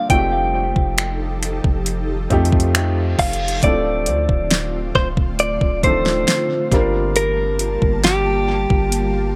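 Contemporary R&B at a slow 68 BPM, sensual and longing, this short cut from a longer piece moves through F9, Dm7 and Gm9 in an echo-heavy mix with light reverb. A clean, compressed electric guitar recorded direct carries the picked melody up front with tape echo, over a natural-sounding baby grand piano accompaniment, an ethereal, airy pad of detuned, chorused chords with tremolo, and a deep, mellow 808-style bass whose long sine notes decay. The produced drum kit, also treated with tape echo, brings a knocking kick, fat snare, metallic hi-hats and finger snaps, and an electronic reverse cymbal rises from 2.9 to 3.6 seconds into the second section.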